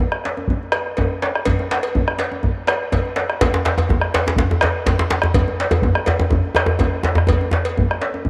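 A straight 4/4 pulse at 124 BPM drives this powerful West African traditional drum ensemble excerpt, where a deep, dark, up-front bombo joins at 0.1 seconds beneath a vintage, band-limited djembe played with soft hands, a metallic cowbell rings in from 0.7 seconds, and a second, tight, cracking djembe with compressed, saturated punch enters at 3.4 seconds, all set in a moderate plate reverb.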